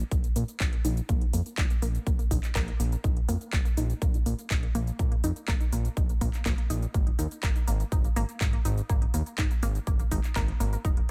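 A fat, detuned sawtooth bass pumps under an overdriven house kit of handclaps, metallic hi-hats and shaker set in a large room from the first second, soon joined by a punchy, tape-warm electronic kick up front and a glassy, crystalline wavetable pluck whose bright, warbling arpeggios carry chorus, digital delay, sidechain pumping and a filter sweep through this driving, emotional progressive house excerpt at 123 BPM, moving from Bb5 to Ab5 at 6.9 seconds in an otherwise dry mix.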